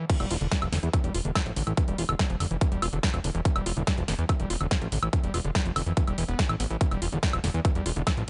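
A squelchy, gritty acid bass riff with distortion, tape echo and sidechain pumping opens this intense, psychedelic trance excerpt before a drop lands at 0.1 seconds with a punchy, up-front electronic kick and a techno kit of punchy snare, warm hi-hats, crash cymbal and woodblock, joined at 0.2 seconds by a fat, thick, detuned sawtooth bass with tube saturation and filter sweeps, all set in a digital ambience.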